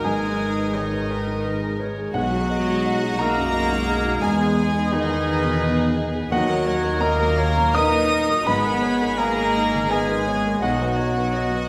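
Bittersweet and longing, this rubato cinematic passage in three sets a floating sul tasto violin section melody over a second, higher violin line, a soft clarinet and a lightly vibrato oboe, while a dark, intimate baby grand piano with audible action noise and a woody viola section accompany, a distant French horn section holds sustained chords, and a cello section and a pure double bass section, which enters at 0.1 seconds, carry the bass, all set in a reverberant recital hall.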